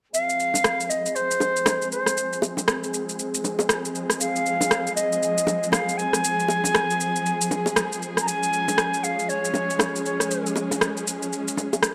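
Driving and warm, this afro house excerpt moves at 118 BPM in F minor with a 16th-note swing, cut from a longer piece. An airy, crisp-attacked silver concert flute carries the melody with tape echo between C5 and Bb5 until 10.5 seconds, over a dark, woody, lush string section holding sustained chords through a low-pass filter sweep as the harmony shifts from Fm to Db at 8.3 seconds. Up front, an overdriven electronic shaker and rim click with studio reverb drive the groove, joined at 0.5 seconds by tight, high-tuned bongos, all in a dry, gritty recording with transformer saturation and small-room ambience.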